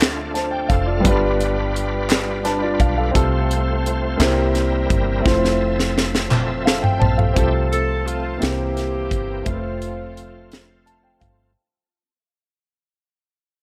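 Uplifting and hopeful, this short slice of slow gospel rolls along in a straight 6/8 feel. A smooth, vintage baby grand piano sits up front with the accompaniment, adding fills around 2.1 seconds and again near the close, while a full, shouting tonewheel organ holds sustained chords through a slow rotary speaker with light overdrive and chorus vibrato. Beneath them, a round, punchy fingered electric bass gives a dark, foam-muted low end, and a polished fusion kit with a high-tuned snare and tight kick drives the groove, rolling into a drum fill before the second section. Hollow, distant group handclaps sit in the background until 6.6 seconds, and a saxophone section enters at 7.7 seconds with a jazz-style melody, its light vibrato and smooth top gleaming over chords that move from F/C through C7 to Fmaj7. The dry, close sound begins to fade out in the final stretch, as this cut from a longer piece draws away.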